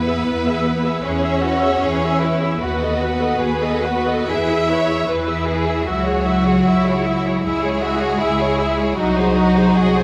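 A slow, romantic classical movement for string orchestra in E major unfolds at 76 BPM in 4/4, its rubato phrasing giving the cut from a longer piece a tender, lyrical mood. A close, smooth violin section carries the melody between E4 and E5, while a viola section with soft attacks and expressive portamento supplies accompaniment in the same register. Beneath them, a focused cello section and an expressive double bass section form the bass, with the cellos sitting forward in the blend. At 1.0 s a second violin section enters with a lush, smooth-topped second line, and every section sings with vibrato. The harmony moves from E through B7/D# and back to E, then to C#m and a G#7/B#, all set in a wet concert hall reverb that adds a glowing sense of space.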